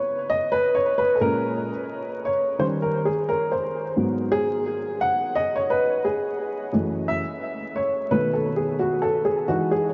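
A dreamy, reverb-soaked sound opens this hip hop fragment, cut from a longer piece. A huge ambient reverb with an eight-second decay surrounds everything, over a bed of vinyl crackle and a top end that stops at 7.5 kHz. A dark upright piano plays solo from 0.0 to 9.9 seconds, spanning F#2 to F#5. Its tone is woody and intimate, with audible action noise and short-sustaining notes, and it sits up front in the mix with a diffuse ambient delay trailing behind it. Over a gentle swung feel, the harmony drifts through C#7, A#m7, D#7, G#m7, F#m7 and B7, giving the moment a mellow, smoky mood.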